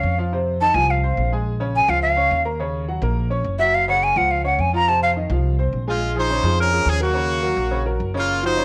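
A straight, danceable 4/4 Latin groove drives this fiery fragment cut from a longer piece, where an up-front, breathy jazz flute with a crisp, chiffy attack and vibrato carries the melody in plate reverb until 5.1 s, a worn-sounding concert grand piano with deep bass adds plate-reverbed accompaniment over a woody pizzicato upright bass, and a punchy, brilliant, close-miked horn section takes up the tune from 5.9 s, the whole a home cassette recording in moderate studio reverb.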